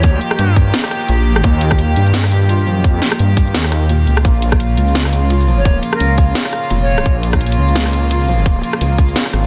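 Half-time drum and bass at 171 BPM in Bb dorian with a swung sixteenth feel, this spacious, heavy excerpt moving from Eb to Bbm sets an up-front overdriven electronic kick and a layered drum kit of cracking snare, bright hats, rim click and shaker beneath a deep, rumbling detuned saw bass with tube saturation, while dark, floating bowed strings pump under sidechain, a soft felt-muted upright piano with audible action noise plays delayed arpeggios in the background, and a breathy, close-miked concert flute adds brief delayed melody phrases at 0.0 and 5.6 seconds, all within a dense, heavily limited master.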